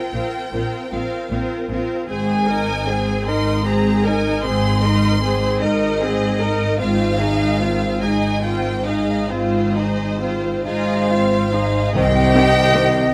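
A lush, lightly reverberant orchestral sound opens this brief, sorrowful film-score fragment, cut from a longer piece and moving in a slow, rubato 6/8 at roughly 43-52 BPM, tuned slightly below standard pitch at A4 = 435 Hz. Bowed string sections carry it from the first moment: violins sing a focused, vibrato-rich melody between C5 and C6 while a second violin line moves beneath, violas fill in smooth, even accompaniment, and intense cellos join a distant-sounding double bass section on the low foundation. The harmony drifts through Bbsus2, Abadd9 and Fm7/Ab, giving the passage an unresolved, longing quality. At 10.7 seconds a concert flute enters with a pure, soft-attacked second line, expressive and gently vibrato-tinged. At 11.9 seconds, as the music settles onto C minor, a mellow French horn section adds tight sustained chords in the background before the fragment ends.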